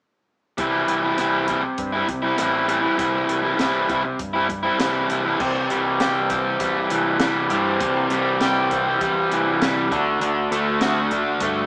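A crunchy, up-front overdriven guitar riff leads this carefree, jangly indie rock excerpt in a straight 4/4, alongside a dark, round growling bass with overdrive and a dry compact cocktail kit with a punchy kick, high-tuned snare and dark cymbals, while a second, brighter overdriven guitar enters in the background at 5.4 seconds, all sounding like a band playing live in one room through a small speaker with moderate large studio reverb.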